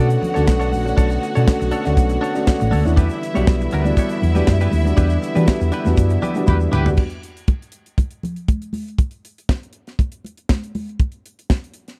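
Disco at 120 BPM in a straight 4/4 feel, driving and sultry, with a dry, close 1970s-style studio sound as the band moves from Bm9 to Em7 over a round, dark hollow-body bass and a tight funk kit with a high-tuned snare, while congas sit in the background and a grainy tube shaker stays very quiet. Bowed strings with intense vibrato, a twangy clean electric guitar through spring reverb, a boxy baby grand with audible action noise, and a reedy, lightly overdriven tonewheel organ on a slow rotary speaker fill out the harmony. A band accent begins at 5.0 seconds, and tight vintage horn stabs and a drum fill arrive at 6.5 seconds. At 7.0 seconds the harmony drops out, leaving only drums and congas to carry on until the kit stops at 12.0 seconds.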